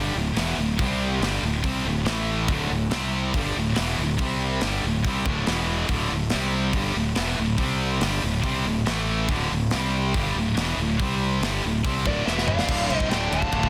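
Aggressive and epic, this heavy metal excerpt drives a pair of bright, high-gain guitar riffs over a growly, fuzz-driven fingered bass and a tight, gritty studio drum kit that enters at 0.4 seconds, with a dark high-gain lead melody and a quieter second line arriving at 12.1 seconds just before a drum fill and a very quiet, double-tracked fuzz guitar riff at 12.7 seconds, all in a dry, dense, heavily limited modern mix.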